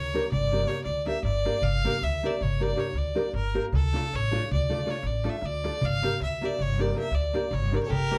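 A clear, focused fiddle leads this restless, bittersweet Balkan wedding-band tune, bowed with light vibrato and a boxy tone that sits up front in the mix. It moves at 315 BPM in eighths through an asymmetric 11/8 with a straight feel, in G dorian sharp4, as the harmony shifts from Gm to Dm at 3.7 seconds and back to Gm. Beneath it, a pizzicato upright bass with gut strings gives a woody, thumpy low end, while a fingerpicked classical nylon-string guitar supplies accompaniment, its finger squeaks audible. A small metal-shelled darbuka adds crisp, high strikes that stay close and dry yet in the background. At 7.9 seconds a bright, intense violin with vibrato enters briefly as a second line, sounding distant. The ensemble is heard from further back in a small room with a wet reverb, and the passage is cut from a longer piece.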